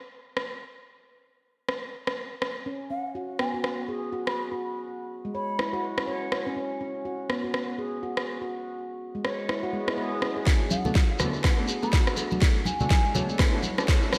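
A sharp, up-front electronic rim click and snare drum with gated reverb opens this hypnotic afro house excerpt at 123 BPM in C# phrygian, joined at 2.7 seconds by ringing stainless-steel handpan arpeggios roughened with 12-bit sampler grit, sidechain pumping and delay, while a hollow, airy bass bansuri with vibrato sings a tongued melody in two passages. After a background swell, the build-up from 10.5 seconds brings a deep kick, a barely audible boomy 808-style bass, grainy shekere, bright thin-skinned congas, a drum fill and chorused, detuned analog key stabs on Bm7, with filter sweeps on both the keys and the handpan. The bright 1980s-style digital production sits in a lush hall reverb.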